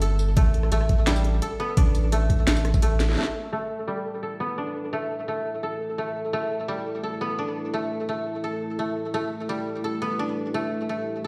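A woody, dry koto sits up front, picking arpeggios from start to finish, with a low-pass filter and digital delay on it and a filter sweep running through it after the opening drop. This cut from a longer half-time drum and bass piece moves at 171 BPM in 4/4 and feels heavy and spacious, opening on an A5 chord. The drop lasts until 3.2 s: a deep, thick saturated sub bass pushes forward, an overdriven electronic kick knocks, and an overdriven drum kit adds a cracking snare, bright hats, rim clicks and tambourine, with a drum fill at 3.0 s, before the bass and drums fall away. Beneath the koto, a pulsing, tempo-synced gated texture hums in the background on a single high note with chorus and its own reverb, and a moody, full-bodied analog pad of detuned sawtooth and triangle tones with a sub octave fades in slowly from 4.0 s, pumping against a sidechain under its chorus. The mix carries light reverb and digital ambience, and it sounds as if played through a big sound system in a bare stone room.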